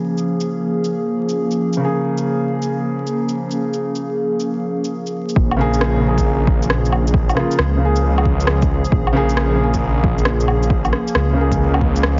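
A menacing, detuned saw bass with a filter swell arrives up front at 5.4 seconds alongside a punchy layered kick, joining a melancholic, rainy future garage groove at 135 BPM with a swung 16th feel, where a soft felt-muted upright piano with analog delay and a warbling, nostalgic tape-like pad with chorus both pump against the sidechain over a Bbm7 chord, while overdriven electronic shaker, woodblock and rim click tick from 0.2 seconds, all set in a lush hall reverb with a heavily compressed, crackling radio-like sound in this excerpt.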